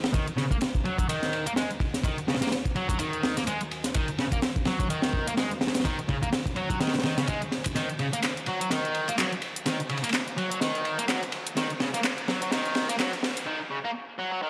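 A dry, gritty recording with a light small-room reverb carries this energetic, funky breakbeat excerpt, built around a crunchy acoustic breakbeat kit of tight kick, high-tuned snare and dark ride cymbal, layered with an electronic house kit of handclaps and hi-hat. Up front, a sludgy, overdriven electric guitar plays a picked, double-tracked riff through tape echo, while a very quiet, moody analog pad holds detuned sawtooth chords with a sub octave and chorus beneath it all. The whole passage is a build-up under a filter sweep, with a drum fill from 7.8 seconds, faint swells, a riser and a reverse cymbal from 9.5 seconds, and a brief break at 13.5 seconds.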